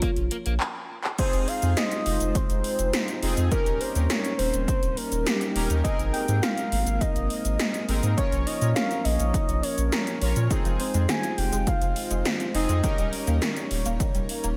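Light reverb and a digital ambience give this brief synthwave passage, cut from a longer piece, a nocturnal, cinematic atmosphere at 103 BPM in a straight 4/4 and F minor. A round, deep analog bass sits up front beside a punchy electronic kick, while 80s electronic pad drums add a gated snare, metallic hi-hats, handclaps, shaker and crash cymbal bathed in gated reverb. Over a shimmering pulse-width pad with sidechain pumping, a mellow, full-bodied octave-layered synth lead carries the melody with vibrato, chorus, phaser and digital delay. A slightly broken-up electric guitar picks a short Bb3 riff at the very start, a drum fill and stop from 0.6 s set up the main section, and bold, brassy synth stabs enter at 1.2 s as the chords move through Fm7, Eb7 and Abadd9. From 10.5 s a nasal, detuned analog pluck plays arpeggios in the background, coloured by chorus, phaser and delay.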